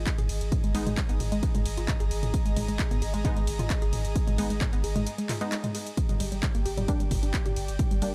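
Driving peak-time techno with a hypnotic, dark mood, built on a heavy, tape-coloured electronic kick and a layered drum kit of handclaps, hats, ride cymbal and toms, under a round, overdriven sub bass that pumps with the sidechain. A woody, wave-folded pluck riff with delay and a muted, detuned dub chord stab with tape echo sit over an airy, breathy pad behind them, all in a dry, close sound. A short break arrives at 5.1 seconds before the drop resumes at 6.0 seconds, as the harmony shifts from Abm to Gm.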